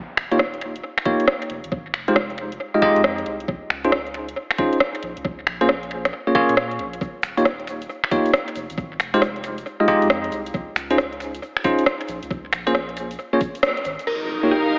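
A swung two-step garage groove at 136 BPM in F minor rides a knocking, tape-warm electronic kick and a garage kit of finger snaps, rim clicks, metallic hats and crash, with a grainy egg shaker joining at 7.0 seconds. Beneath it a soft, round dub sub bass pumps against the sidechain while a bell-like tine electric piano, filtered and delayed, stabs out a moody late-night cycle of Eb7, Fm7, Dbmaj7 and Bbm7. After a band accent at 13.6 seconds, the final moments at 14.1 seconds bring a woody FM synth pluck with 12-bit grit, a downlifter and a rich, bowed string section, with an ethereal airy pad following at 14.3 seconds, all steeped in a lo-fi AM-radio sound and heavy echo-chamber reverb.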